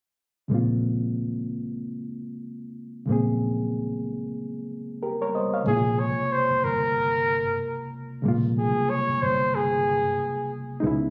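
A reedy, slightly out-of-tune electric piano sits up front over a dark, round, foam-muted electric bass on a Bbm9 chord from 0.5 s in this soulful, late-night R&B piece with a lightly swung sixteenth-note feel, and from 5.7 s a smooth-topped flugelhorn with light vibrato and tape echo joins them with an up-front solo, the whole captured as if on a phone in a small club room with compression.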